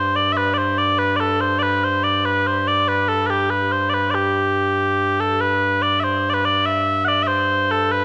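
Rustic and ancient in mood, this short excerpt from a longer medieval piece moves at 96 BPM in a straight 6/8, counted in dotted quarters, in G major. A single set of small bagpipes carries the whole passage alone, its tone mellow and sweet, sounding as one continuous line placed up front. The pipes span from G2 up to F#5 across the 8 seconds heard. An opening section runs to 5.4 seconds before a second section takes over and carries the music to the cut. A moderate recital hall reverb surrounds the instrument.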